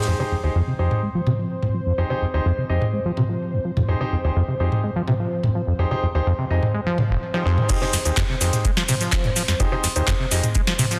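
A gritty, raw acid house excerpt opens on a dark, detuned sawtooth pad with chorus and sidechain pumping, bright grand piano stabs through a low-pass filter and delay, and a brief touch of a dry, very quiet acoustic reggae kit. A rubbery, resonant acid bass riff then enters up front with delay, and a booming analog drum machine, re-recorded in a large room, adds crisp snare, metallic hats, handclaps, cabasa, toms and crash from 0.9 seconds. At the drop at 7.7 seconds the reggae kit returns with its high-tuned snare, hi-hat and shaker alongside a deep, tape-warm electronic kick, all set in a lush hall reverb under a dense, heavily limited modern master.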